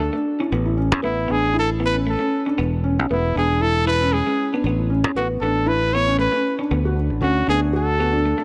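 Highlife in A major at 116 BPM with a lightly swung sixteenth feel, this joyful excerpt cut from a longer piece moves through Asus2, E and D chords over about 8.4 seconds. A clear, close-miked trumpet carries the melody up front with vibrato and scooped notes, while a growly, direct fingered electric bass sits alongside it and a felt-muted upright piano adds mellow, dark arpeggios with audible action noise and tape echo. In the background, a clean, picked semi-hollow electric guitar supplies accompaniment through spring reverb, all set in light reverb and studio ambience.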